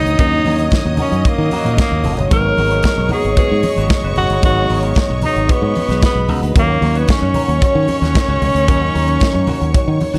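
Driving and sultry, this disco excerpt moves at 113 BPM in a straight 4/4, with a breathy, whispered tenor saxophone carrying the melody up front over a growly, punchy fingered electric bass and a tight, polished studio drum kit of kick, snare and hi-hat. Behind them, a lush, bowed string section plays a second line with slapback echo, and a French horn section holds classical-style sustained chords with light vibrato. A worn, slightly out-of-tune tine electric piano and a clean, picked electric guitar with wah and spring reverb add quiet accompaniment, low-tuned congas enter at 0.4 seconds, and the harmony moves from D#m7 to G#m9 and back within a small room ambience.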